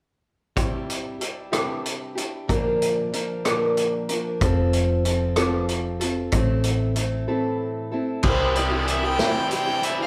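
Recorded live by a band in one large studio room with moderate reverb, this nostalgic slice of folk rock and heartland rock moves at 63 BPM in 6/8 and C major, cycling through Cadd9, Bb, F and Am. A boxy, picked parlour acoustic guitar and a vintage drum kit, with a punchy kick, dark cymbals and a rolled-off top, sit up front from the start, and a round, amped hollow-body electric bass joins at 4.4 seconds. After a brief break, a nasal, earthy bowed fiddle takes the melody at 8.2 seconds, while a biting, double-tracked overdriven electric guitar plays a riff.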